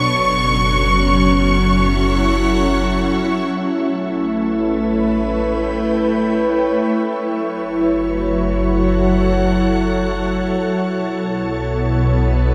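A huge, wet reverb with a long 8.4-second tail surrounds this peaceful ambient excerpt in free time and A mixolydian, cut from a longer piece. A soft, organ-like pad sits up front, pure and bright with a detuned chorus shimmer, holding sustained chords from F#m7 through A7 to Bm7 over a deep, ominous drone that rumbles and warbles with vintage tube grit from 0.2 seconds. For the first 3.5 seconds, a distant, lush violin section plays a high, intense note with vibrato before the pad and drone carry on alone.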